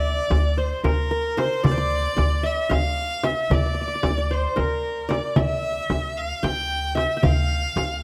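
A clear, vibrato-laden bowed violin carries a melancholic, hypnotic melody in D makam ussak, joined from the start by a fingerpicked qanun whose bright-edged triple strings trace a second line in the same register, and a woody, dark pizzicato upright bass holding a low D up front. At 0.3 s a small, bright frame drum enters close by, marking the 7/8 metre at 225 eighth-note beats per minute with a straight feel. Close, detailed microphones and light reverb give this brief cut of a longer Turkish makam ensemble piece an intimate sound.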